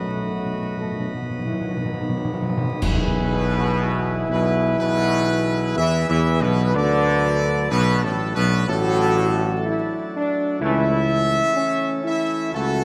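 Classical ceremonial fanfare at a stately 62 BPM in E mixolydian, triumphant and regal, with a bright trumpet section carrying the melody up front over sustained chords from a clear, vintage trombone section, a dark, distant French horn section and a full principal-chorus pipe organ in the background, while a mellow, close-miked tuba holds the bass. Round, soft-mallet timpani on calf heads open with a fill and play until 4.3 s, and dark clash cymbals with concert bass drum join the band for an accent at 2.8 s. A moderate concert hall reverb surrounds the ensemble, vinyl crackle sits beneath it, and the excerpt is cut from a longer piece.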